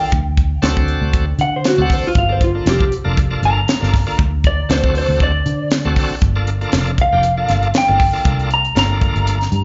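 A live club recording heard through the venue's PA, with light club reverb and a dulled top end, captures a brooding, mournful straight-eighth soul blues cut from a longer piece. Up front, a warm, slightly broken-up electric slide guitar takes a solo over the first 6.2 seconds, with slapback and tape echo, while a shouting, lightly overdriven tonewheel organ with key click and a slow rotary speaker supplies accompaniment. A dark, foam-muted, punchy fingered bass and a dry, tight funk drum kit with a high-tuned snare drive the groove through D7 and Gm7 changes.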